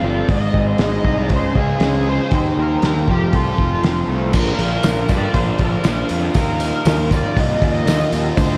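A straight 4/4 pulse carries this trippy, hypnotic psychedelic rock fragment, with a muffled, cloth-damped drum kit arriving at 0.3 s, its fat snare and tight kick up front, while a round, punchy fuzz bass drives underneath. A double-tracked overdriven rhythm guitar plays a phaser-tinted riff over Ab, Db, Eb and F, then Bb and Ebsus2, as a reedy vintage combo organ holds very quiet sustained chords with light vibrato. A dark, distorted lead guitar sings a bluesy melody through wah and diffuse ambient delay, a jingly tambourine joins in the background at 4.3 s, and the whole dreamy mix is soaked in cathedral reverb.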